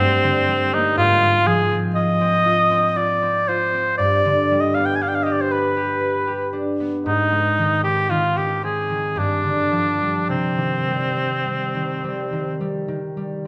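A warm cor anglais with light vibrato and a soft attack carries a yearning, solemn melody up front in this Romantic classical duo, moving freely in rubato triple time. Beneath it, a mellow, ringing concert harp is fingerpicked in accompaniment, sounding on briefly after the cor anglais falls silent at 12.6 s and closing the fragment at 13.5 s. A lush recital-hall reverb surrounds both players, giving the passage, drawn from a longer piece, the resonance of a church or concert hall.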